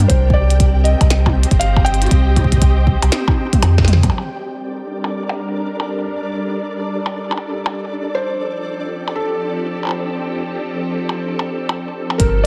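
Cerebral and melancholic, this IDM excerpt in G minor moves at 119 BPM with swung sixteenths, as a silky, warbling string machine with vintage 12-bit grit holds chords over Cm, Gm and F beneath a flickering, granular texture that pumps. A muted, intimate felt upright piano with audible action noise and tape echo carries the melody, pausing at 3.6 seconds and returning at 8.1 seconds. The round sine sub bass, up front, and the deep electronic kick drop out at 4.1 seconds after a drum fill and return at 12.2 seconds, while a glitchy kit of clicky, filtered hats, a tiny snare, toms and percussion blips runs throughout, all set in a digital, echo-heavy ambience.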